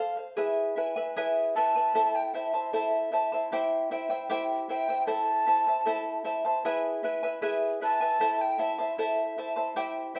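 Earthy and festive, this short cut from a longer Andean folk piece moves in an unhurried two-beat metre with a straight feel, played by a small ensemble in one room. A large quena carries the melody, its end-blown wooden tone airy and warm with vibrato, tongued notes and a little chiff, captured close to the microphone. Beneath it, a fingerpicked charango supplies the accompaniment, its double strings shimmering and some octave-doubled pairs adding sparkle, sitting up front in the mix. The quena stops at 9.5 seconds, leaving the charango to finish alone until 10.2 seconds. The harmony circles through E, A minor and C across two passes of the same section, and a generous studio reverb lends the live performance a spacious, wet glow.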